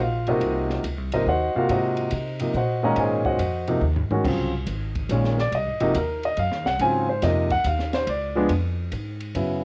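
Searching and spiritual, this modal jazz fragment swings in 3/4 at 141 BPM in Ab mixolydian, with an up-front grand piano colored by cassette tape and plate reverb voicing an Ab9 chord that moves to Db(b9) near 8.1 seconds, a woody, thumpy pizzicato upright bass underneath, and a compact cocktail drum kit with a high-tuned snare, punchy kick and a dark, rolled-off top playing a brief fill at 3.8 seconds, all captured as a lightly reverberant home cassette recording.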